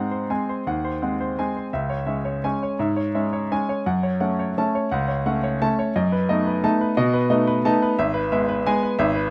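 A clear, intimate grand piano plays a graceful, elegant classical waltz in 3/4 with a supple rubato feel, moving from G#7 through C#m, F#m and B7/F# to E/G# across this 9.3-second passage cut from a longer piece, its dry, up-front sound close enough that the instrument's action noise is plainly audible.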